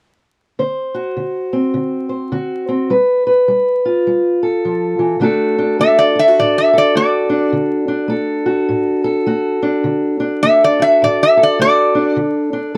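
A swung 4/4 groove at 104 BPM drives this soulful, rollicking acoustic country blues excerpt, where a dark, boxy parlour steel-string guitar fingerpicks a D7-to-G7 accompaniment in D mixolydian before settling on D major at 5.2 seconds, and a metallic, nasal metal-body resonator slide guitar, played with fingerpicks and a steel bar, takes the melody from 5.8 seconds, all captured in a dry, close 1970s-style studio sound with light reverb and vinyl crackle.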